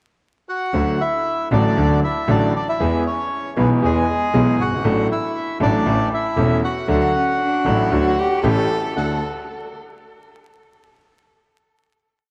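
A reedy, vintage-toned bandoneon carries the melody from 0.5 seconds. Its band-limited voice sits up front, building short motifs into sentence-like phrases that are partly doubled in octaves. This is a complete, elegant and playful tango in D major at 117 BPM in 4/4, played with a rubato feel. Beneath it, a brilliant concert grand piano with deep bass and long sustain lays down a milonga rhythm, as does a clear, focused bowed double bass with a nasal edge and vibrato. At 7.1 seconds a cello joins as a second line, soft in attack and played sul tasto with an airy bow. It sounds close, intimate and slightly boxy, answering in the melody's rests through a diffuse ambient delay. The mix is soaked in a lush hall reverb with a dreamy haze and vinyl crackle, and it settles on a final D chord at 9.0 seconds.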